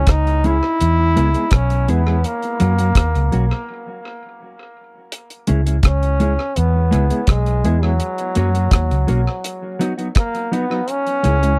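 Recorded dry and close in a 1970s studio style, this hypnotic, meditative roots reggae passage pairs a bright, roomy solo trombone melody touched with tape echo against a dark, round, foam-muted fingered electric bass, a deep acoustic drum kit with a tight kick, hi-hat and rim click also carrying tape echo, and a mellow, clean, compressed electric guitar with its own echo, with a break from 3.7 to 5.1 seconds before the chord cycle returns.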